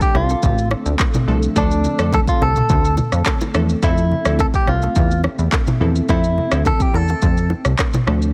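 A light reverb gives this sultry, hypnotic afrobeats excerpt a soft sense of space, cut from a longer piece and moving at 106 BPM in a straight 4/4. An electronic afro-pop drum kit sits up front with a deep kick, handclaps, rim click, shaker and toms, joined by a punchy, funky analog bass whose sawtooth and pulse-wave plucks hit fast and decay. A bright, twangy clean electric guitar, recorded direct and compressed, carries the picked melody from D4 to A4 through a digital delay until about 7.5 seconds. From 1.3 seconds a crystalline wavetable pluck, detuned and thickened with chorus and a filter sweep, adds accompaniment, while a very quiet, dark granular pad blurs sustained chords beneath with a moving notch and long release. Ringing bongos and congas played with soft hands stay close and dry in the background as the harmony shifts from Dm to Fmaj7.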